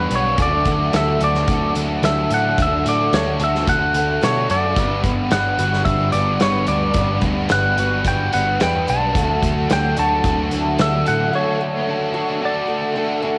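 Wistful and hazy, this short shoegaze and dream pop rock cut moves at a straight 110 BPM in D major, drifting from D through Gmaj7 to Dmaj7 with the soft wear of a home cassette recording in a lightly reverberant room. A bright, twangy, compressed clean electric guitar carries the melody through tape echo, over a shimmering, octave-doubled twelve-string acoustic picking arpeggios in a lush chorus, while a biting overdriven guitar plays its riff up front and a hollow-bodied overdriven semi-hollow guitar adds a background riff bathed in reverse reverb. A dark, round, foam-muted vintage bass and a loose indie drum kit with a punchy kick and rolled-off top fall away by 11.3 seconds, leaving the guitars to ring through the closing break.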